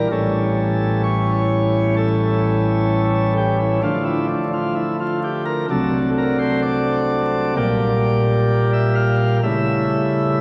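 The recording sounds like an old disc, with vinyl crackle over a wet church reverb that lets each chord ring for about 3.5 seconds. This short classical excerpt is a solemn, dark chorale-style piece in D minor, played at 64 BPM in 4/4 with a rubato feel. A single chamber organ carries it alone from start to finish, its full principal chorus set up front with a chamber voicing and a distinct chiff at the start of each note. The organ spans from A1 in the bass to F5 at the top. The harmony moves from A7 to Dm, then D7/C, Gm/Bb, and arrives on A7/C# at 9.4 seconds just before the fragment ends.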